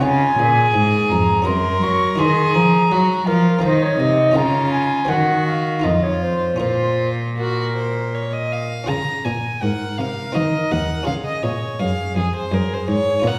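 In a straight, flowing triple metre, this introspective baroque-style sonata movement, cut from a longer piece, sets an airy, crisp-attacked silver flute melody heard at a distance over a reedy gut-string violin second line, a close, up-front period cello bass and a muted, lute-like buff-stop harpsichord accompaniment, with all four playing throughout the 13.4 seconds in a reverberant recital hall heard from further back in the room.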